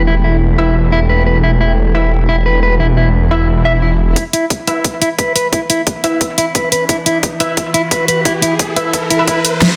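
A straight 4/4 groove drives this aggressive, mechanical dark technical drum and bass fragment, where a snarling, detuned saw bass growls with distortion and overdrive under a moody, gritty analog pad, pumping sustained chords, a clean, fingered electric guitar arpeggiating through dub echo, and bold, punchy orchestra-hit-like synth stabs, until the bass drops out at 4.1 s and a tight electronic kick joins a dubstep kit of huge snare and bright hats at 4.2 s while a swell and riser build and the pad's filter sweeps toward the cut at 9.8 s.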